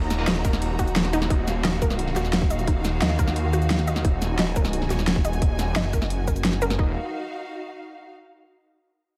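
A straight 4/4 pulse at 175 BPM drives this dark, mechanical slice of technical drum and bass in Eb minor, built on a tight, up-front electronic kick and a layered dubstep kit with a huge snare, bright hats and a tape-warm shaker. For the first 1.2 seconds a very quiet, gritty breakbeat sampler kit adds a high-tuned, pitched-up snare and ride cymbal with the air of a large room. Underneath, a snarling, growling saw bass in unison detune churns low, distorted and saturated, pumping against the kick while a filter sweep with a moving notch carves through it. An analog pluck spins round, chorused arpeggios that pump in time and trail off into a diffuse ambient delay, while a lush, intense string section voices a bowed Ebmadd9 chord with vibrato. The kick, bass and pluck stop at 6.9 seconds, leaving the strings to ring on alone until 8.1 seconds in a dreamy, reverb-soaked mix with a moderate plate.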